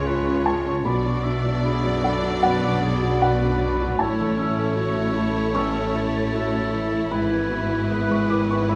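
A moderate scoring-stage reverb surrounds this short, cut-from-longer cinematic piece, moving and tender in a rubato 4/4 over chords from C# through Bm and A to E/G#. A warm, expressive violin section carries the melody while a clear oboe, a close-miked clarinet, a background violin section and, from 0.1 s, a pure-toned large flute ensemble weave second lines around it. Supporting them are a felt-muted upright piano with mellow short sustain, a very quiet viola section, a dark French horn section holding sustained chords, ringing concert harp arpeggios, a lush cello section and a bright, distant double bass section.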